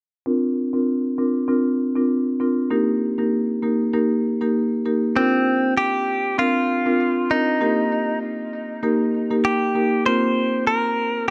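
A smooth marimba struck with medium mallets opens this afrobeats excerpt at 0.3 seconds, sitting up front and playing accompaniment through a low-pass filter that sweeps across the opening phrase. Its chords move from Bbadd9 to Eb, and a gentle swing on the sixteenths gives the groove a relaxed, romantic and joyful feel in 4/4. At 5.2 seconds a clean electric guitar, recorded direct, enters with the melody and stays prominent alongside the marimba until the cut at 11.3 seconds. The guitar is bright, twangy and scooped, its picked notes compressed and trailed by tape echo. The second phrase returns to Bbadd9 and Eb before landing on Fsus4. A light, small-room reverb and a dark, warm production tie the two instruments together.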